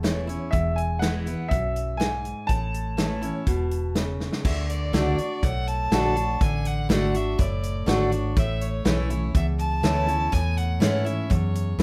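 Nostalgic and sunny, this 123 BPM honky-tonk and classic country excerpt in A major sets a picked, full-bodied jumbo acoustic guitar, a dark, round, foam-muted electric bass and a natural country drum kit with punchy kick and crash, hi-hat and snare under a bright, woody upright piano melody from 0.5 to 3.9 seconds, until a drum fill at 4.2 seconds hands off to a clear, nasal bowed fiddle solo with light vibrato from 4.5 seconds, all in light reverb.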